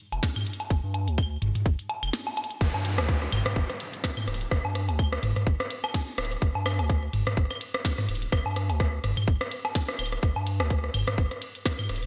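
Minimal techno at 126 BPM with a 16th-note swing, hypnotic and sparse, built on a tight, overdriven electronic kick up front, a round, deep analog bass with sidechain pumping, a clicky minimal kit of hi-hat, ride and tiny snare, and a booming analog drum machine of claves, rim click, toms and woodblock carrying delay and a large-room sound, with a brief break at 2.1 seconds leading into a drop at 2.6 seconds where a downlifter sweeps through until 6.4 seconds, all in a bright 1980s-style digital production with light reverb.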